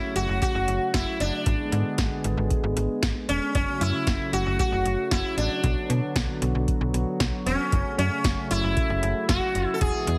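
A buzzing, bright sitar carries the melody from the very start, its plucked notes ringing with sympathetic strings and trailed by digital delay, over a smooth, warbling analog pad that holds sustained chords with a detuned, chorused vintage glow. At 0.2 seconds a slap-like FM bass with a snappy, metallic attack enters alongside an up-front electro drum machine of deep kick, punchy snare and metallic hi-hats. This short cut from a longer synth-pop piece moves at 115 BPM in a straight 4/4, sitting in F# minor with chords shifting from F#m through G#dim and Bm before returning to F#m. The mood is nocturnal and cool, with the sitar's shimmering tone set against the decaying digital bass and the pad's slow-attack sawtooth and sine textures. Light reverb and a digital ambience surround the parts, while heavy compression gives the whole a radio-like sound.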